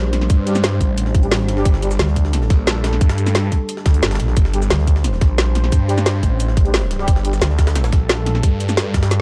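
Aggressive and futuristic, this dark technical drum and bass fragment in G minor runs at 177 BPM, with a tight, up-front electronic kick and a layered kit of woody snare and metallic hats over a gritty, pitched-up jungle sampler kit in the background, while a swirling phased detuned saw bass pumps under a moody analog pad, a growling FM bass joins it from 2.0 to 5.2 seconds and returns at 7.4 seconds, and mellow brass stabs drift through dub echo.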